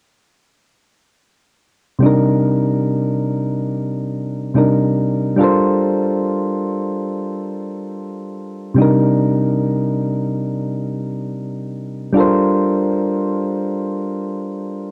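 In free time, this moody, longing R&B fragment, cut from a longer piece, features a solo electric-piano-like synth whose round, mellow tone carries a warbling vintage chorus and cassette-tape character, sitting up front from 2.0 s. Its soft, gentle notes strike quickly and then decay as the harmony moves between Cm9 and Gm11, with the pair heard once more from 8.8 s. A moderate studio reverb surrounds the keys, and the whole piece carries the sound of a home recording on cassette.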